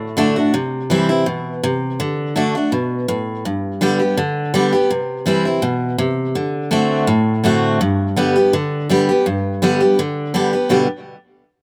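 A woody, full-bodied picked steel-string acoustic guitar with old strings plays alone and up front through this joyful, driving bluegrass passage in 4/4 with a light swing, spanning G2 to G4 over changes from D and C to G and D7, all in a dry outdoor sound with little reverb, taken from a longer piece.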